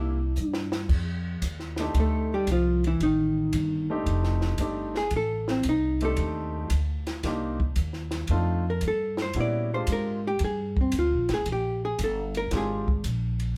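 The guitar, piano and upright bass sound together over a C7 chord, and a short drum fill from the compact cocktail kit at 0.4 seconds leads into a hollow-body jazz guitar solo from 0.9 seconds. This is a warm, swinging slice of small-group swing and bop in 4/4, with a swung eighth-note feel. The archtop guitar carries the melody with a dark, clean, picked electric tone, sitting up front as it moves over F13, Cm7 and Bb13 harmonies. The pizzicato upright bass is woody and close, while the clear grand piano adds intimate accompaniment in which the action noise of the keys is audible. The drums bring a high-tuned snare, punchy kick, hi-hat, ride and crash, and moderate studio reverb places the group a little further back in the room as the bass and solo run to 13.6 seconds.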